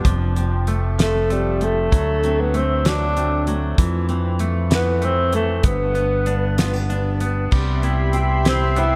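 A swaying six-eight lilt carries this tender pop ballad, where a damped 70s drum kit with a fat snare and a fingered electric bass sit up front beneath double-tracked fingerpicked nylon-string guitar and twangy, compressed clean electric guitar arpeggios touched with tape echo, a breathy, intimate tenor saxophone with vibrato and scooped notes takes the melody from 1.0 s, and a lush, detuned unison pad with chorus arrives on sustained chords at 7.5 s, all within a dreamy mix soaked in church reverb.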